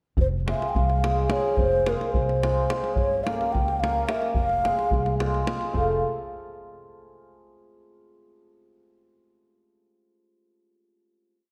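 This is a short Balkan folk piece in the Balkan wedding band style, fiery and virtuosic, moving at 216 BPM in eighths through a straight 5/8 metre in F harmonic minor. A low ney carries the melody from 0.2 s, its hollow, breathy, mellow reed-cane tone shaded with vibrato and tongued attacks as it spins motif-based period phrases. The cimbalom joins at 0.5 s with shimmering, ringing off-beat chords in close voicing, placed up front, while the pizzicato upright bass plays woody, thumpy root and fifth notes on the main beats. A deep davul, close, dry and also up front, plays a two-stick drum pattern underneath. The harmony moves from Fm to Gdim and back to Fm before the piece settles on an F major final chord at 5.7 s, heard in a moderate concert hall reverb.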